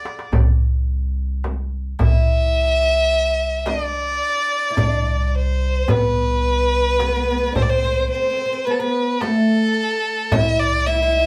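A small, reverberant room holds a live Turkish makam ensemble in this brief excerpt from a longer piece, tuned to A4 = 439 Hz. Set in C makam rast at 108 BPM counted in eighths, the music moves in a straight 10/8 with a longing, soulful character. A single bowed violin carries the melody up front, its tone rich and focused with vibrato, while a fretless oud with double strings, plucked with a plectrum, plays a woody second line beneath it. An upright bass, plucked pizzicato on steel strings, sits up front on a thumpy low C from 0.3 seconds. A short drum fill fills the opening 0.3 seconds, and a crisp metal-shell darbuka struck with hard hands enters at 0.1 seconds and stays in the background, joined at 0.3 seconds by a small, bright frame drum.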